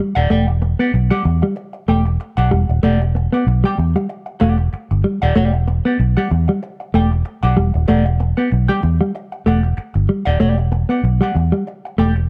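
Hypnotic and driving, this short funk cut sits on a single Em9 chord with a light swing in the sixteenths. A mellow, compressed electric guitar plays an up-front riff in a narrow low-middle range, while a vintage hollow-body jazz guitar adds clean, picked accompaniment higher up, coloured by wah. Underneath, a foam-muted vintage bass gives round, punchy low notes, and the whole is wrapped in a dark production with light reverb.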